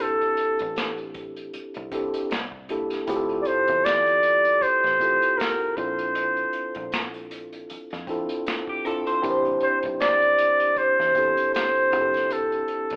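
A mellow, soft-attack flugelhorn carries a close-miked, jazz-style solo up front in this soulful, late-night neo-soul R&B excerpt at 78 BPM with a lightly swung 16th feel, backed by a clean tine electric piano, a punchy, foam-muted fingered bass and an airy, unplugged kit played with bundle sticks on finger snaps, hi-hat, kick and snare from 0.2 s, while a picked clean electric guitar slips in briefly at 8.7 s, the band captured live in one room with light reverb and a telephone-like tone over chords moving from Fmaj7 through Bbmaj9 and Am9 and back to Fmaj7.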